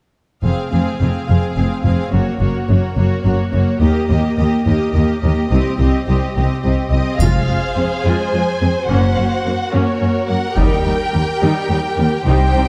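Dramatic and relentless, this cinematic orchestral film-score cut moves at 71 BPM in a straight 6/8, its chords cycling through F minor, G-flat, E-flat and C minor. A full string body enters together at 0.4 seconds, with a rich, even violin section carrying the melody in a high register while a second, softer-attacked violin section traces an expressive line beneath it. Focused, clear violas fill the middle, and a smooth cello section joins a lush, bowed double bass section to anchor the low end, all with vibrato. At 7.2 seconds a distant taiko ensemble with heavy sticks booms in as if from a large room, and a close, dry triangle with a dark tone briefly sounds in the background before falling away at 8.3 seconds. The scoring-stage reverb and dark production give the strings a broad, weighty sheen, and the passage is cut from a longer piece.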